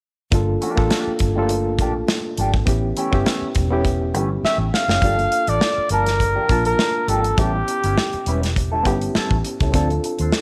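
A soft-attacked flugelhorn carries the melody from 4.5 s to 8.6 s, up front in the mix, with vibrato, scooped notes and a jazz-style solo voice that gives this lush 1970s-style soul fragment its silky, cinematic mood. Beneath it, a reedy electric piano plays the accompaniment through its built-in speakers, its barky, bright tone lightly overdriven and shimmering with fast tremolo. A vintage fingered electric bass sits low and round, its foam-muted, amped sound dark and punchy. A clean, mellow electric guitar enters at 0.6 s with a fingered riff colored by wah. The polished modern studio kit is airy and up front, with tight kick, medium-tuned snare and hi-hat in a 4/4 groove with a light sixteenth-note swing, and a drum fill at 4.4 s leads into the second section as the harmony cycles through Gm7 and A7 before resolving toward Dm7, all set in a small, lightly reverberant room.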